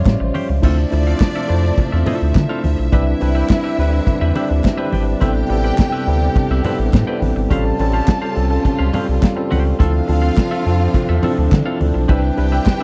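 A dry, close-sounding clip cut from a longer disco track at 105 BPM, glamorous and driving, with a rubbery, bouncy square-wave bass up front and a vintage drum kit of boomy kick, dark cymbals and a pumping small-room tone. A worn, slightly out-of-tune tine electric piano, lightly overdriven, sits forward and plays fills at 4.1 and 8.7 seconds, while a twangy, clean electric guitar with spring reverb adds accompaniment alongside bright, hard-hand congas and crisp group handclaps in the background. Lush bowed strings fill out the sound: a clear studio section holds sustained chords behind everything, and from 0.6 seconds a symphonic section with expressive vibrato carries a second line over chords moving through Dm9, Cmaj9, Am9 and A7alt.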